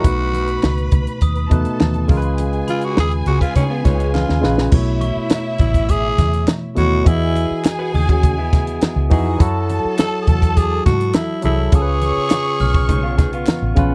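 Lush 1970s-style soul at 103 BPM in 4/4 with a straight feel, this short cut from a longer piece sets a smooth, cinematic mood. A growling tenor saxophone carries the melody with a breathy, raspy subtone, opening with a solo passage that runs to 4.7 seconds, where a drum fill leads into the next section. Beneath it, a symphonic string section adds a bowed, vibrato-rich second line, while a barky tine electric piano with phaser supplies the accompaniment and a round, foam-muted fingered electric bass anchors the low end. The compact cocktail drum kit sits up front with a punchy kick, high-tuned snare and dark cymbals, joined by very quiet low-tuned congas and crisp group handclaps in the background. An electric guitar through a small old amp plays a slightly broken-up, lo-fi riff from 3.4 to 9.2 seconds and returns near the close, and a glockenspiel struck with brass mallets rings faintly behind it all. 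The dry, close studio sound follows a harmony that moves from B7 and C#7 through B9sus4, Emaj9 and F#m9.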